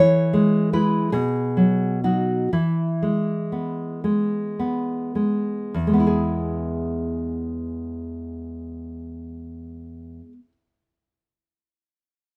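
A solo nylon-string guitar, full-bodied and up front, carries this brief romantic excerpt for classical guitar in E major, moving in a rubato 6/8 at roughly 34-54 BPM in dotted quarters. Its deep, thumb-plucked tone spans E2 to C#5, moving from E to B and back to E as the opening phrase slows down over its first 5.7 seconds before a second idea arrives. Light reverb frames the playing, lending a nostalgic, sunny glow to this fragment cut from a longer piece.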